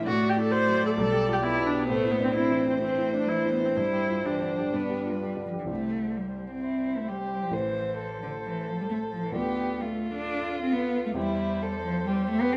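An intimate, close-miked cello carries the second line with a soft attack, airy bow and smooth top, while a dark, woody violin sings the melody with vibrato above it. A sul tasto viola and a baby grand piano with long sustain fill out the accompaniment in this quick, cheerful and graceful classical-period movement for piano quartet, taken at 131 BPM in C major with a rubato feel. A moderate stone-room reverb frames this short cut from a longer piece, and the music moves into a new section at 5.7 seconds.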